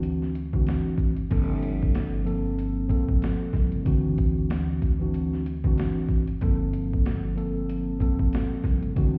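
Tough and reflective, this boom-bap hip-hop excerpt in G dorian rides a swung 94 BPM groove, where a mellow, clean tine electric piano sits up front with a cassette-tape tint, alternating D9 and Gm11 chords over a woody pizzicato upright bass, while a gritty, compressed sampler-style kit with a thumpy kick and medium-tuned snare sits up front and a grainy egg shaker stays barely audible, the whole mix sounding muffled as if heard through a wall and dusted with vinyl crackle.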